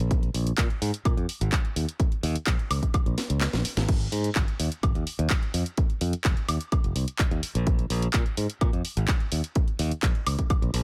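Filtered disco house with a funky, sunny mood, cut from a longer piece and moving in a straight 4/4 groove. A bright, growly fingered electric bass sits up front, running through a low-pass filter and pumping with sidechain. The electronic kick is punchy and tape-warm, placed forward in the mix, while the house drum kit adds a cracking snare, handclaps, hi-hat, woodblock and crash cymbal, its hats, percussion and cymbals also pumping with sidechain. A drum fill arrives at 3.2 seconds, and the kick drops out from 3.4 to 3.9 seconds before returning. The sound is dry and close, with little reverb, the drums carrying the character of a re-recording in a small room.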